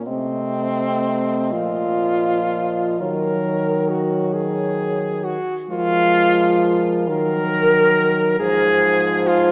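From the first moment, four French horns sound together in a solemn, elegiac classical passage cut from a longer piece, moving in a rubato 6/8 at 40-46 BPM in dotted quarters. A dark, soft-attacked, close-miked melody horn sits in the background while a warm second horn with vibrato stands up front, a mellow close-miked horn supplies accompaniment, and a punchy, smooth-topped bass horn anchors chords such as Cm6, Ebm7 and Fm/Ab, all bathed in a long church reverb with a small-speaker sound.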